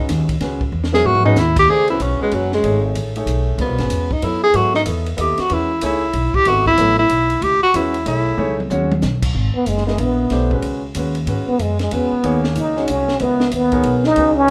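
A warm tenor saxophone opens this hypnotic and searching modal jazz excerpt at a brisk 188 BPM in swung 3/4, soloing up front with vibrato and scooped notes over a present, polished baby grand piano, a woody pizzicato upright bass and a small, dark cocktail drum kit with a high-tuned snare and punchy kick that adds fills. The harmony rests on C#m9 before moving to G#m9 at 9.3 seconds, where a close-miked trombone with a plunger mute takes over the solo at 9.6 seconds with a clear, wah-wah voice, light vibrato and a soft attack. A moderate large studio reverb surrounds the group.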